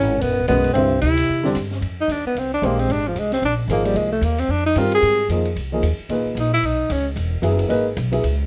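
This modal jazz excerpt has a searching, spiritual mood and a brisk swing feel. A breathy tenor saxophone carries the melody up front, close-miked with a soft attack, light vibrato and a plate reverb sheen. A mellow bass clarinet sits in the background as a second line and drops out at 1.5 s. The saxophone then moves into a solo at 1.8 s and carries it until 7.1 s. Underneath, a woody, dark pizzicato upright bass with steel strings sits close in the mix, and an intimate baby grand piano with short sustain and audible action noise supplies accompaniment. An open acoustic drum kit, recorded naturally in a studio room, plays hi-hat, ride and a high-tuned snare with dark cymbals, and the harmony settles into long stretches of minor eleventh chords.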